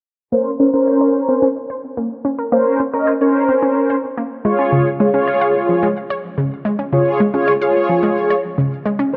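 A straight 4/4 pulse at 109 BPM carries this confident, bittersweet pop clip in Bb minor, cut from a longer piece. A mellow, brassy synth brass accompaniment with chorus and a low-pass filter sits up front beside punchy, warbling unison pluck arpeggios that run through a digital delay, both under a filter sweep from 0.3 to 9.1 seconds. The harmony moves from Bbmadd9 to Db at 4.5 seconds, all set in a lush hall reverb and a dark production.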